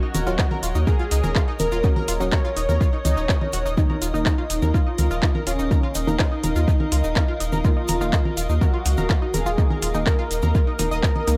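A straight 124 BPM pulse drives this cinematic, echo-heavy melodic techno in Eb minor, with an up-front, tape-warm electronic kick entering at 0.4 seconds alongside a round, dark analog bass and a small-room drum kit of congas, handclaps and metallic hats, all pumping against the kick, while a grainy tube shaker sits in the background. Over this, a fat, detuned sawtooth lead with a sub octave, vibrato and a filter sweep carries the melody through dub echo, and a tight, nasal sequenced synth spins arpeggios. A muted, decaying filtered dub chord stab and a morphing, warbling wavetable pad with vintage 12-bit grit hover behind, moving from Gb/Eb to Ebsus2 at 3.8 seconds.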